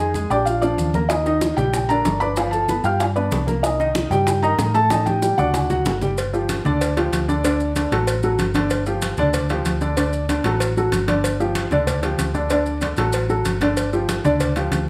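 Fiery and passionate, this salsa excerpt in G minor drives along at 190 BPM, with a soft, felt-muted upright piano carrying the intimate melody until 6.0 seconds over a baby grand's short-sustained accompaniment, both up front with audible key action. A dark, round hollow-body electric bass sits prominently beneath, while thick-skinned congas in the background and grainy, mellow maracas run throughout, joined at 1.1 seconds by low-tuned, saturated bongos and cowbell struck with hard hands. A drum fill at 4.9 seconds leads into a section that alternates between G5 and D chords under light reverb.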